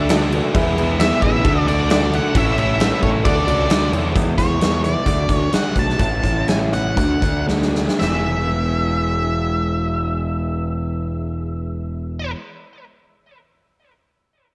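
A swaggering classic rock excerpt in E mixolydian opens with a crunchy, double-tracked guitar riff with slapback echo, a growling overdriven bass, a second bright, very quiet overdriven guitar, and very quiet woody upright piano and shouting tonewheel organ chords turning through a slow rotary speaker; the piano, organ and second guitar stop at 4.1 seconds. A big, punchy acoustic drum kit of crash, hi-hat, kick and snare drives the straight 4/4 feel at 112-133 BPM, while from 1.0 seconds a dark octave-fuzz lead guitar carries the melody with distortion and tape echo. The tempo slows from 4.1 to 8.0 seconds, closing with a drum fill just before 8.0 seconds, after which the drums drop away and the guitars and bass ring on in a big arena sound with moderate stage reverb.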